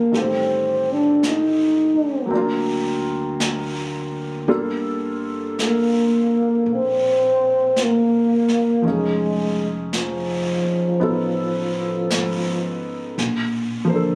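A breathy trombone carries the melody of this tender, intimate jazz ballad, its mellow, whispered tone shaped by a soft attack and light vibrato, sitting up front yet carrying a roomy, slightly distant air before it falls silent at 12.8 seconds. Beneath it, a clear upright piano supplies present, polished accompaniment with long sustain and audible action noise, continuing to the close at 14.2 seconds. A pizzicato upright bass with steel strings adds a woody low end, while a brushed drum kit with a medium-tuned snare and hi-hat keeps a swing with a rolled-off top from 0.1 seconds. The tempo is a slow 55 BPM in 4/4 with a swung eighth-note feel, and the harmony moves through Am7b5, D7alt, Gm7 and F7alt before settling on Bbmaj9. Captured on a phone in a club-like room with light reverb and compression, the sound feels close and unvarnished, like a snippet overheard from a longer set.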